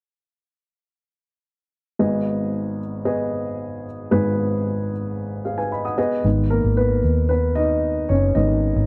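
Dry and close, this 1970s-style studio recording sits in a small room, with the instruments up front and near at hand. It is a brief pop fragment cut from a longer piece, in G# minor at 113 BPM in a straight 4/4, tuned to A4 = 439 Hz, with a dramatic, bittersweet mood. An upright piano opens alone at 2.0 s on a G# minor chord, its woody, intimate tone carrying audible action noise as it spans a broad register in an accompanying role. At 6.2 s the piano moves into a solo turn, and a vintage muted fingered electric bass enters beneath it, dark, round and amped, with a foam-muted tone. The pair play on together until the fragment ends at 8.9 s.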